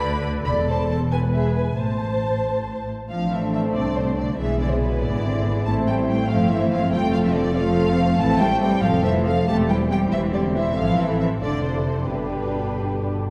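A lush first-violin section carries the melody in this lively, cheerful classical-period movement for string orchestra, its smooth, even vibrato sitting close and high between B4 and B5. Set in a quick 6/8 at 93 BPM in dotted quarters with a straight feel, the passage opens in A minor and turns toward C major at 8.2 s, passing through chords such as E7/B, F, C/E, Dm7/F and G. Beneath the tune, the second violins play sul tasto with a soft attack and light vibrato, giving their line an intimate glow, while the violas fill in an expressive accompaniment with a smooth top. The cellos add a rich, even foundation, and the double basses sit up front with a dark, soft-edged tone reaching down to E1. Each section plays from 0.0 s to 13.2 s, heard from further back in a scoring-stage room whose wet 1.6-second reverb gives the ensemble a spacious bloom in this excerpt cut from a longer piece.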